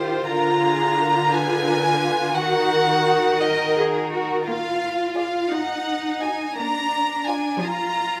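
Elegiac and yearning, this slow romantic movement for string orchestra in Eb minor moves in a rubato 6/8 at 57 BPM, cut from a longer piece. A first violin section carries the melody with light vibrato and a soft, intimate attack up front, while a woody second violin section sings a darker line beneath until 7.5 seconds. A smooth, distant viola section supplies accompaniment and a lush, focused cello section holds the bass, all within a concert hall reverb, as the harmony moves from Bb7 over D toward Eb minor and a final Bb chord at 6.6 seconds.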